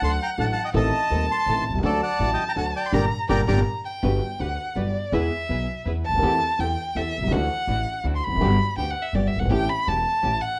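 A dark, expressive violin leads this tense, melancholic tango in a rubato 3/4, bowed up front with vibrato and portamento, first as a second line beneath a reedy, airy bandoneon melody that stops at 3.6 seconds, then taking the solo from 4.0 seconds. A mellow concert grand piano with deep bass and a woody, thumpy pizzicato upright bass on gut strings play throughout, while a smooth, even chamber string section adds stabs in the background. The band plays an accent from 2.9 seconds, and a moderate club reverb surrounds the ensemble in this short cut from a longer piece.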